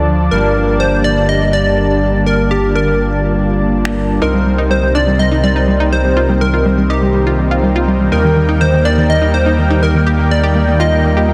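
A straight progressive house groove drives this bittersweet excerpt, anchored by a deep, dark analog bass sitting up front while smooth, detuned supersaw stabs move through a filter sweep with delay. A catchy, punchy square-wave lead with vibrato and delay carries the melody over a shimmering, ethereal pad in the background, as the harmony moves from Gmadd9 to Cm7 and then Eb. A layered electronic finger snap lands at 3.9 s, and at 4.2 s a full-bodied analog pluck adds chorused arpeggios, all set in a lush hall reverb with a dense, heavily limited modern master.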